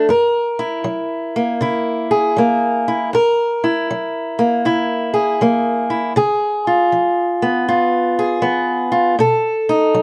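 A boxy, up-front parlour steel-string acoustic guitar, fingerpicked with audible finger squeak, plays alone through this swaggering, soulful 10-second blues fragment at 79 BPM with swung eighths, moving from F#7 to C#7 at 6.1 s and B7 at 9.2 s in F# mixolydian, all set in a moderate studio room and coloured by worn cassette tape with warbly pitch drift.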